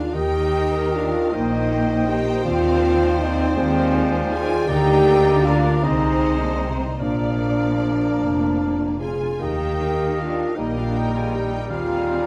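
A serene, slow romantic orchestral movement in a rubato 6/8, this excerpt opens with lush, vibrato-rich violins carrying the melody over mellow French horn chords, bowed viola accompaniment, and a very quiet, ringing harp playing arpeggios. From 0.1 seconds a clear, distant solo oboe and a smooth clarinet add second lines while a punchy bassoon, focused cellos and an even, lush double bass section fill out the low end. From 0.2 seconds an airy flute section and a second violin line join in the background, all set in a moderate scoring-stage reverb.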